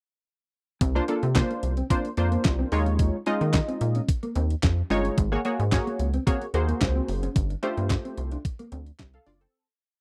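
A four-on-the-floor boogie beat at 110 BPM drives this short, late-night, slick piece of early-eighties boogie funk: an overdriven 12-bit drum machine with a thumpy kick and a snare layered with handclaps sits up front, while a rubbery, hollow square-wave bass bounces through a fat syncopated line with chromatic approach notes. A punchy, detuned sawtooth polysynth with chorus enters at 1.0 seconds with syncopated chord stabs and short fills, and a dark, clean electric guitar with lush chorus plays a muted single-note riff over ninth sus4 chords moving from C through Eb and Ab to G. The dry, close studio sound holds everything tight until the fade-out from 7.4 seconds.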